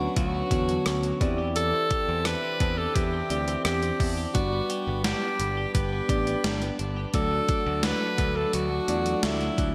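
A bright, close-miked alto saxophone carries the melody up front with a touch of delay, over a tine electric piano, a shimmering chorused pulse-width pad in the background, a picked twelve-string guitar riff with subtle chorus, and a direct, bright picked electric bass, before an overdriven, gated 1980s-style drum machine with a thumpy kick and gated-reverb snare enters at 0.2 seconds. This uplifting, nostalgic 1980s-style pop excerpt moves at 86 BPM in a straight 4/4, with chords shifting from Bmadd9/D through Cadd9/E and G to D. The bright digital production sits in a lush hall reverb.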